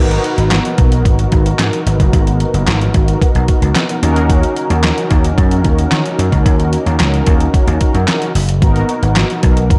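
A straight 4/4 groove at 111 BPM drives this late-night, danceable slice of early-eighties boogie funk in G# minor, where an overdriven, detuned 8-bit drum machine with a thumpy kick, medium-tuned snare, hi-hat and handclaps sits up front beside a punchy, amped vintage slap bass, while mellow synth brass, round and detuned with chorus, vibrato and a filter sweep, sustains G#m7 and D#m7 chords beneath a light digital ambience in a dark, warm production.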